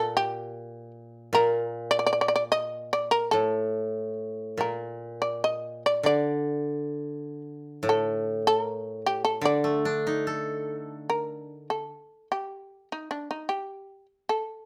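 Close, detailed microphones and a moderate studio reverb capture this austere, calm excerpt of Japanese traditional music, which moves in a free, rubato two-beat feel. A powerful, buzzing shamisen, plucked with a plectrum, carries the melody up front, while a bright, woody koto played with fingerpicks accompanies it from the lower register. The koto falls away at 11.9 seconds, shortly after a new section begins at 11.1 seconds, and the percussive shamisen continues alone to the close at 14.7 seconds.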